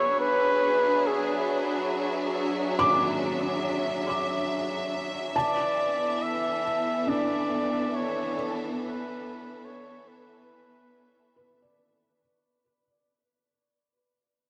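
A huge, wet reverb with a long 7.2-second tail surrounds this luminous, weightless ambient fragment, cut from a longer piece and moving at a slow 70 BPM in a straight 4/4. Up front, a solo flugelhorn carries the melody with a soft attack, light vibrato and a classical poise, its tone trailed by a diffuse ambient delay. A lush studio string section holds bowed, smooth ensemble chords with an even, vibrato-rich sheen. A felt-muted upright piano plays mellow, intimate arpeggios through the same kind of diffuse delay, its audible action noise adding a close, human texture. The harmony rests on E9 before shifting to Asus2/E at 5.3 seconds, while a fade-out running from 3.1 to 12.2 seconds lets the whole passage dissolve into the reverb.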